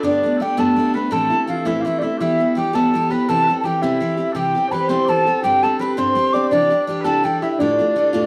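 Dark yet lively and driving, this short Celtic folk jig cut from a longer piece moves at 111 BPM in a straight 6/8 feel. A mellow wooden flute carries the melody throughout, its pure, distant tone shaped by vibrato and tongued notes. Beneath it, a concert harp and small bagpipes share a second line: the fingerpicked harp rings with a slapback echo, while the sweet, continuous pipes sit lower in the mix with their own vibrato. An up-front, jumbo steel-string acoustic guitar supplies picked accompaniment with bright, fresh strings, spanning from D2 to G4. The harmony moves through Gadd9, Am, Em and C before Gsus4, Cadd9 and a closing Dm. The whole recording sits in a wet studio reverb and carries the worn, warbling pitch drift of old cassette tape.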